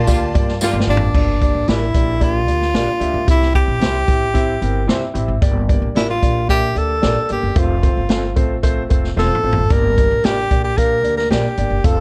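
Driving straight 4/4 feel carries this passionate, uptempo 1960s-style soul excerpt, where a breathy, close-miked tenor saxophone sings the up-front melody with scooped notes over a woody, growly pizzicato upright bass, a deep-toned grand piano with long sustain, and a swinging big-band drum kit with boomy kick and sampler grit that plays fills at 0.6 and 9.2 seconds, while lush bowed strings, smooth horns and a jingly tambourine sound only in the opening second and a dark, slightly broken-up electric guitar adds lo-fi stabs with phaser and delay in the background until 11.4 seconds.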